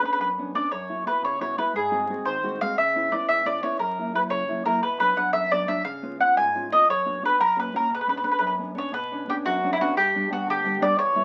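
Heard through the crackle of a very old 78 rpm record in a modest studio room, this wistful, passionate Italian folk serenade sways in 6/8 at 117 BPM in B harmonic minor, with a round, up-front mandolin picking the melody on double strings over a dark, full-bodied nylon-string guitar thumb-plucked in classical style, before the tune turns to a new phrase at 8.9 seconds in this fragment cut from a longer piece.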